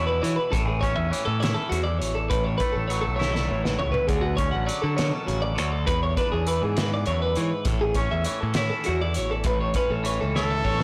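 A blown-out, overdriven recording with light reverb frames this playful, bright slice of math rock and midwest emo in 6/8, cut from a longer piece. Up front, a compressed twelve-string electric guitar spins chiming arpeggios through digital delay over a scooped, twangy electric guitar accompaniment and a direct, picked electric bass, while a loose indie drum kit with a fat snare and punchy kick in a pumping room adds fills around 3.2 seconds and again near the close. A present, pop-style solo trumpet enters on A4 at 10.4 seconds, just as the clip ends.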